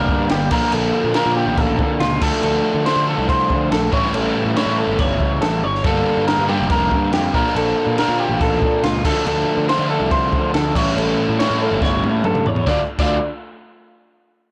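A crunchy, double-tracked overdriven guitar sits up front with a bright riff washed in spring reverb, driving this restless, intricate cut of math rock and midwest emo in a straight 4/4. Above it, an electric guitar through a small old amp plays lo-fi, slightly broken-up arpeggios with a subtle chorus, while a fuzz-soaked picked bass growls underneath. A compact cocktail drum kit with a punchy kick, a high-tuned snare and a dark, rolled-off top keeps time across crash, snare and toms, rolling into a fill from 11.8 to 12.7 seconds. A very quiet, twangy clean guitar is heard only in the opening 0.7 seconds. The harmony cycles through minor-seventh, major-seventh and dominant chords before settling on a plain minor chord at 12.7 seconds, and the whole recording carries a blown-out, overdriven character with light reverb.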